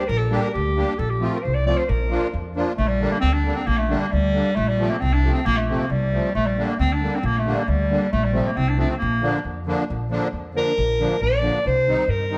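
Exuberant and virtuosic, this Balkan wedding-band snippet, cut from a longer piece, sets a clear, classical-style clarinet melody against a reedy, shimmering musette-tuned accordion and a woody pizzicato upright bass in a roomy recital-hall reverb, with the clarinet taking a solo from 9.9 seconds as the harmony turns toward a closing minor chord.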